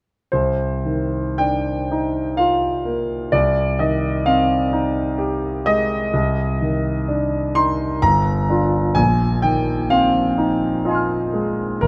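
A clear, open concert grand piano with deep bass sits up front in this mysterious, nocturnal impressionist solo piece in C minor, played rubato in 3/4 at about 63 BPM and tuned to A4 = 445 Hz, moving through Cm11, Fm9/C, Cmadd9, Gm7 and Bb9sus4 from 0.3 to 11.9 seconds, captured by close, detailed microphones with light reverb as a short cut from a longer work.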